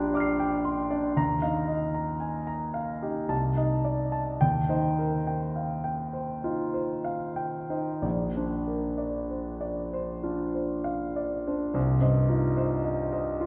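Nocturnal and wistful, this impressionist classical piece for solo piano moves in a rubato three-beat lilt, drifting through lush added-tone harmonies like Bb6/9, Ebadd9 and Cm6 before shifting toward a new section at 11.8 seconds on a Cmadd11 chord. The concert grand has a natural, warm tone with a deep bass, reaching from Bb1 up to C7, and sits up front even as the listener seems placed further back in a concert hall whose wet reverb lets each chord bloom and linger. This is a short cut from a longer piece, lasting 13.5 seconds.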